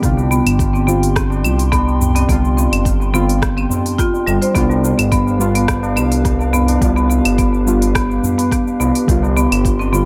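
Meditative and mystical, this organic downtempo cut moves at 106 BPM in a straight 4/4, resting on a single G7 chord throughout its roughly ten seconds. A smooth, saturated synth bass sits up front with a sustained, mellow sawtooth-and-square tone. The rosewood-barred marimba, played with medium mallets, spins woody arpeggios from 0.3 seconds, trailed by dub echo. Behind them, a deep, vintage chord stab with a filter sweep and tape echo decays softly under chorus and sidechain pumping. A detuned, lo-fi pad with ring modulation swells in slowly and hangs with a long release, its nostalgic warble colored by chorus and built-in reverb. The rhythm comes from an electronic kick and a produced afro-pop kit of crisp hats, cabasa, claves and rim clicks in small-room ambience, while a high-tuned, ringing tabla echoes distantly in the background, all within a light, echo-heavy mix.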